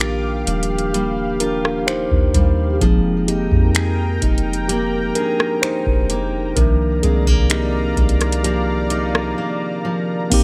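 Contemporary R&B at 64 BPM with a romantic, dreamy mood, where a mellow, clean tine electric piano takes the lead from 0.0 to 10.3 seconds over Ebmaj9, Fm11 and Cm11 chords, accompanied throughout by a lush, detuned sawtooth pad with chorus and sidechain pumping, fingerpicked steel-string acoustic guitar arpeggios with tape echo, a soft, round 808-style bass, and a booming, dry analog drum machine with a deep kick, metallic hats, finger snaps, rim clicks and crash cymbal, all set in a digital ambience, in a short cut from a longer piece that closes on a break at 9.4 seconds.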